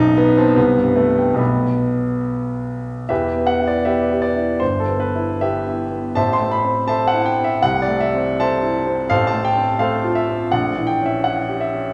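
Classical romantic character piece for solo piano in E minor, bittersweet and stormy, moving in a rubato 2/4 at 68-86 BPM, where a clear, intimate baby grand with audible action noise and long sustain sits up front yet is heard from further back in a recital hall with a wet 1.4-second reverb, its opening passage giving way at 3.1 seconds to a new section that moves toward an A#dim7 before this short cut from a longer piece ends at 11.9 seconds.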